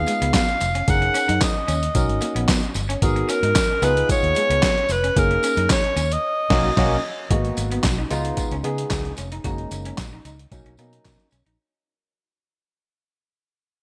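A straight 4/4 groove at 112 BPM drives this slick, danceable slice of early-eighties boogie funk, cut from a longer piece and cycling through chords from C#7 and F#6 to Bmaj9 and G#m9. Up front, a gritty, pitched-down sampler-style drum kit thumps with a thumpy kick, medium-tuned snare, handclaps, hi-hat and crash, its overdrive and gated reverb giving it a compressed punch, while a jingly tambourine sits in the background. A dark, round, foam-muted fingered bass anchors the low end, and a barky tine electric piano through a combo amp fills out the harmony with lush chorus. A twangy, slightly broken-up picked guitar plays a riff further back, also bathed in chorus. The breathy, whispered alto saxophone carries an intimate pop-style melody until 7.1 seconds, with a band accent landing near the end of its phrase, and the track then fades out over the final section, all framed by bright 1980s-style digital production and light reverb.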